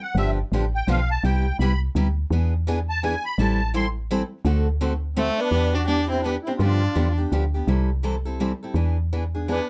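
A reedy musette accordion with a shimmering musette tuning opens this fiery, swinging gypsy-jazz excerpt, taking a solo turn from 0.0 seconds over a brisk 168 BPM in 3/4 with a swung eighth-note feel. A woody, round, mellow FM bass with a fast, decaying attack sits up front beneath it, while a picked steel-string acoustic guitar adds concert-style accompaniment, warm in tone and also up front. The harmony moves through G7, Cmaj9, E7, Am7 and D7 before settling into E minor, where Em7, G7, C6 and E7 carry the second section. A single bowed violin takes the melody from 5.2 seconds, smooth and even with light vibrato, placed close and forward in the mix. The accordion returns briefly alongside the violin at 9.5 seconds as this fragment of a longer piece ends, all captured with close, detailed microphones and a touch of light reverb.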